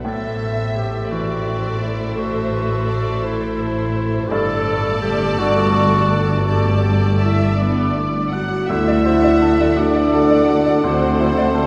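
A rubato lilt in 6/8 carries this tender, moving cinematic passage, cut from a longer piece, as a lush violin section sings the melody over a second violin section's rich line and a mellow, distant clarinet that drops out at 7.6 seconds. Beneath them a bright, brilliant baby grand piano and warm violas supply the accompaniment, a very quiet concert harp rings out fingerpicked arpeggios, and expressive cellos with portamento join distant double basses on the bass. From 7.2 seconds a roomy solo oboe adds another line and a French horn section holds sustained chords with light vibrato, the whole ensemble bathed in a wet cathedral reverb as the harmony moves from Am through Gsus2 to D.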